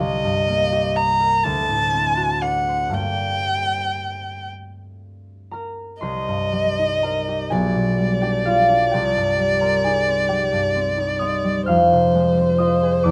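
Romantic classical music for violin and harp, this short passage from a longer piece carries an elegiac, solemn mood at a slow 38-45 BPM in dotted quarters, moving in 6/8 with a free, rubato feel and tuned to A4 = 436 Hz. The bowed violin carries the melody as a single player, its dark tone shaped by vibrato, soft attacks and expressive portamento, and it sits close and up front. Beneath it the concert harp provides fingerpicked accompaniment across a broad range, its mellow, ringing acoustic sound also placed up front. The harmony begins in G minor, passing from Cm7 through D7 to Gm, then settles into C minor at 6.0 s, moving through G/B and back to Cm before reaching Fm at 11.7 s. Close, detailed microphones and a light reverb give the recording an intimate, finely etched sound.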